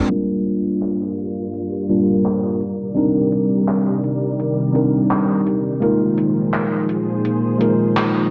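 A lightly swung 4/4 pulse of handclaps and hi-hat from a gated 80s digital drum machine, tape-softened and sitting low in the mix, carries this hazy, woozy vaporwave excerpt, as a clean, up-front tine electric piano with analog chorus and delay and a silky, slow-blooming string machine with ensemble chorus drift through Gm7, Cm9 and Bb7sus4 under a filter sweep, the whole mix dark and low-passed and set in a moderate recital hall reverb.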